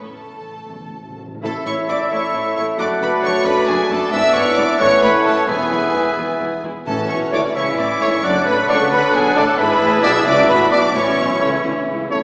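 Graceful and lively, this short passage from a longer classical-period movement for symphony orchestra moves in a quick 6/8 at 88 dotted-quarter beats per minute in A major. Hard-mallet timpani open with a fill over the strings before the full orchestra joins at 1.4 seconds, and the drums return in brief spots through to the end. A rich, expressive violin section carries the melody up high with close, vibrato-laden bowing, while a second violin line, a lush viola section, a smooth-topped cello section and a focused double bass section fill out the harmony beneath. Among the winds, a metallic, pure flute, a clear oboe and a bright, roomy clarinet add supporting lines, with a bassoon filling out the accompaniment, dark French horns holding sustained chords and a punchy trumpet adding stabs. The harmony circles through A, D over F#, E7 over G# and E, and the whole ensemble sits in a wet scoring-stage reverb, heard from further back in the room with a small-speaker quality.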